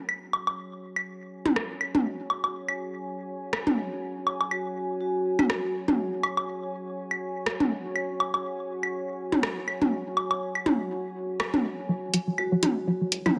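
A swung 4/4 pulse drives this cool, quirky minimal techno excerpt, carried first by electronic claves, woodblock and toms that sit up front with a tape-warm, layered character. At 1.6 seconds a punchy analog drum machine joins with hi-hat and rim click, its snare, hats and room filtered at both ends. Beneath it all, a deep, moody ambient pad warbles with a vintage, detuned sawtooth tone, chorus and its own reverb. A mellow vibraphone played with soft mallets rings briefly on a single note, trailed by dub echo. At 11.9 seconds a build-up begins: a juicy, squelchy blip pluck riff arrives up front alongside a rubbery, hollow square bass kept very quiet, while a filter sweep moves over a synth arpeggio sound. A moderate plate reverb gives the whole a measured sense of space.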